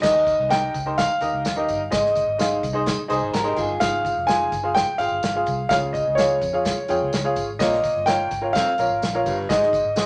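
Joyful and uplifting, this excerpt of uptempo 1960s-style soul moves at 127 BPM in Eb mixolydian, with a clear, up-front grand piano carrying the melody over a bright, slightly detuned upright piano whose woody action noise sits close in the mix. A dark, foam-muted electric bass, a natural drum kit with dark cymbals and a tight kick, and a jingly tambourine in the background drive the groove through a wet club reverb. A slightly broken-up electric guitar through a small old amp drops in a brief riff at 3.1 seconds, and a raspy, gritty baritone saxophone adds a punchy riff from 7.6 seconds.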